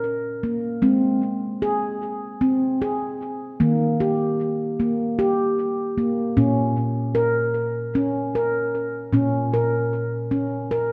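In a straight 7/8 at 152 BPM counted in eighths, this hypnotic, meditative world excerpt features a solo handpan, tuned to A4 = 439 Hz, ringing from Bb2 to Bb4 under soft fingertips with a dark, mellow nitrided-steel tone, placed up front with tape echo in a wet echo-chamber reverb and small-room ambience, as the chords move from Ab at 0.8 seconds through Eb to Bbm at 6.4 seconds before the cut at 10.9 seconds.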